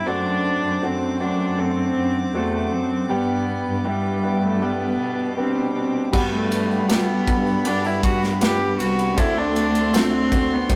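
Captured in a rough rehearsal room with moderate stone reverb, this melancholic, longing pop ballad excerpt at 79 BPM sets a nasal, reedy bowed cello melody over clear grand piano, a floating, sul tasto string section, a rich, smooth cello section carrying the bass and very quiet, clean picked electric guitar arpeggios, before a punchy, polished drum kit and a faint, jingly tambourine join at 6.1 seconds.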